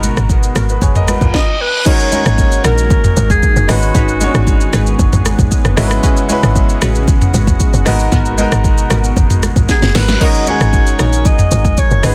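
A woody log drum bass stands out, punchy and percussive with a fast attack and decaying tail, driving this hypnotic, late-night amapiano cut taken from a longer piece. An electronic afro-pop drum kit sits up front with a deep kick, a sharp, softly clipped snare, smooth hi-hats, shaker, rim clicks, toms and crash, all carrying a tape-warm sheen, while very quiet congas add a ringing, close and dry acoustic touch. A clear concert grand piano plays open accompaniment chords with deep bass, over a lush, thick pad of detuned sawtooth and square waves with chorus in the background and a very quiet, bright chord stab shaped by a filter sweep and moving notch. A reverse cymbal rises into a brief stop before the drop lands at 1.9 seconds. A breathy, whispered alto saxophone carries the melody with an intimate yet distant, roomy quality and digital delay, returning alongside a drum fill at 9.7 seconds. 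The dense, heavily limited modern master sits in a digital ambience, with minor-ninth and major-thirteenth colours hovering over a steady pedal.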